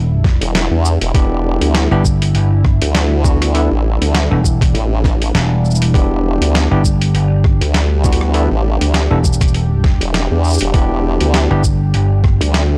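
A dry, gritty hardware recording in a digital ambience carries this swaggering glitch hop excerpt at 100 BPM in E minor, swung on the sixteenths and resting on a single Em7: a thumpy, pitched-down electronic kick and a tape-warm, sampler-style boom bap kit of hi-hat, rim click, shaker and medium-tuned snare sit in studio reverb alongside a punchy, amped slap bass and a detuned, chorused formant-sweep wobble bass, both up front, while a bell-like tine electric piano enters at 1.1 seconds with bright, clean stabs through analog delay and sidechain pumping over a mellow, slow-attack analog pad that also pumps in the background.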